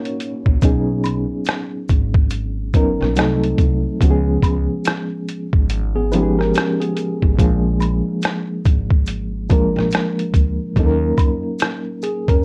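A reedy, slightly out-of-tune reed electric piano with fast tremolo opens up front beside a brief, lightly overdriven tine electric piano with analog delay that returns at 6.0 seconds, setting a hazy, melancholic lo-fi hip hop groove at 71 BPM in Eb minor with swung 16ths; a gritty, pitched-down boom bap sampler-style kit of thumpy kick, hi-hat and rim click soon joins, followed by faint maracas and woodblock in the background and then a woody, dark pizzicato upright bass with transformer saturation, the whole recording steeped in worn, warbling cassette tape and moderate studio ambience.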